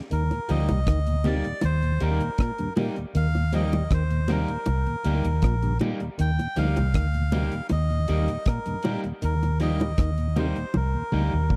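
A dry, close 1970s-style studio sound frames this sunny roots reggae excerpt in Eb major at 79 BPM, where a dark, round, foam-muted bass and a deep drum kit with a tight kick sit up front, low-tuned bongos are struck with hard hands, a reedy, breathy melodica carries the tune through dub echo, a slightly broken-up, twangy guitar adds spring reverb and its own dub echo, and a mellow tonewheel organ on slow rotary speaker and a stringy, phased clav playing arpeggios sit in the background, with a drum fill arriving at 10.7 seconds.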